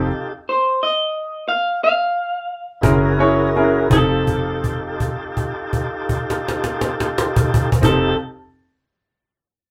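A laid-back, rollicking slow blues in 12/8 around 55-61 BPM in F mixolydian, this brief excerpt opens with a slowing stop where a brilliant, woody upright piano, a full tonewheel organ through a slow rotary speaker with light overdrive, and a dark, foam-muted, round fingered electric bass hold F9, before a slightly broken-up, lo-fi electric guitar takes the melody at 0.5 s. The snappy cajon, struck with hard hands, enters at 2.8 s as the harmony moves to Gb9, and a long held note sounds from 3.9 s as the chord returns to F9. The band sounds like it is playing live in one small, wet-sounding room.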